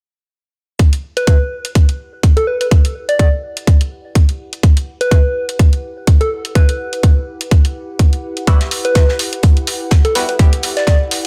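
A warbly, lo-fi pad with sidechain pumping fades in beneath a tight, up-front electronic kick and bright hi-hats to open this bouncy, aggressive, swung bass house excerpt; a round, FM keys-like synth lead with chorus, vibrato and analog delay enters at 1.2 seconds, and at 8.5 seconds a nasal, band-passed sawtooth chord stab with phaser and delay arrives alongside a very quiet, dry 70s drum kit with a fat snare, the whole mix sitting in a small room with light reverb.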